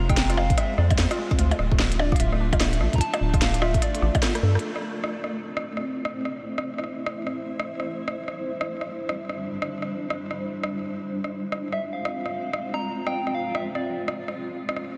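IDM at 148 BPM in A minor, cerebral and intricate, with a swung sixteenth-note feel, heard in an excerpt cut from a longer piece. A cloudy, blurred granular pad holds sustained chords throughout, moving from Fm and Dm through Am and Cadd9, while a soft struck FM lead with chorus, vibrato and delay sings a gentle, keys-like melody at the start and returns briefly around 11.7 seconds. In the opening section a warbling, lo-fi pluck with 12-bit sampler grit plays arpeggios in the background, a round, dark analog bass sits up front, and a deep electronic kick drives the groove. A glitchy kit of tiny snare, clicky hats, rim clicks and percussion blips, treated with delay, runs nearly the whole length, and a drum fill with a band accent at 4.5 seconds marks the turn into the second section, where the bass, kick and pluck drop away. The dreamy mix is soaked in a huge ambient reverb.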